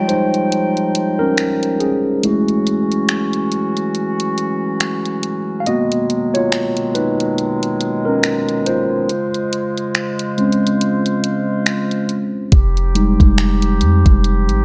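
A mellow tine electric piano opens this sensual, late-night contemporary R&B passage, playing a solo throughout over a distant, roomy woodwind section that holds sustained chords with light vibrato and a sidechain pumping effect. At 0.1 seconds a soft, produced drum kit of finger snaps, hi-hat and kick joins up front, moving at a slow 70 BPM in 4/4 with a swung 16th-note feel. The harmony moves through Fm9, Gbm9, Abm9 and Dbmaj7 before returning to Fm9. Most of the passage is a break, and at 12.5 seconds a deep, boomy 808-style bass with a clean, sine-like tone arrives up front. Light reverb and a dark, warm production give this cut from a longer piece its smooth atmosphere.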